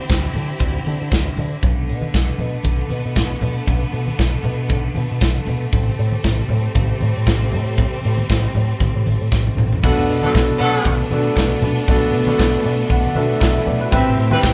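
Danceable and sultry, this disco excerpt moves at 117 BPM with a light sixteenth-note swing. A punchy, airy drum kit with bright cymbals and a dark, round picked bass through an envelope filter drive it, with low-tuned congas in the background and a distant, lush string section holding sustained chords from D9sus4 to Bm7 and Am7. After a drum fill, the second section opens at 9.8 s with an up-front grand piano carrying tube saturation and long sustain, a brief higher string line, clear vibrato horn stabs, very quiet crisp handclaps and a piano fill from 12.4 s, all sitting in a reverberant room where the band plays live together.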